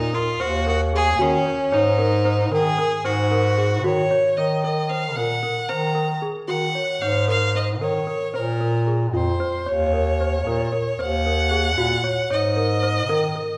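Contemporary chamber music in 5/8 at 227 BPM (eighths), this restless, shimmering passage is cut from a longer piece and centers on E-flat minor harmony. A single bowed violin carries the melody with vibrato, its tone biting and nasal yet smooth on top. Beneath it, a slightly out-of-tune celesta with felt hammers spins bell-like, sweet arpeggios, while a soft-attacked bass clarinet holds the low line in a classical style, all set in a reverberant recital hall that places the listener further back in the room.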